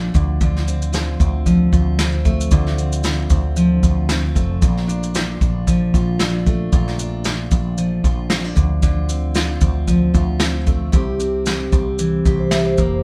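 Acoustic pop at 114 BPM in 4/4 with a light sixteenth-note swing, heartfelt and carefree, built on a full-bodied jumbo steel-string acoustic guitar picked up front with audible finger squeak, a dark, round fretless electric bass, and a vintage brush kit of punchy kick, medium-tuned snare and shaker, warm and rolled-off in a small room, all moving through Dm7, Bbmaj7 and C in a moderate live-room reverb until a dry, close-miked vibraphone with soft mallets and medium motor vibrato rings in at 12.4 s just before the cut-off passage ends.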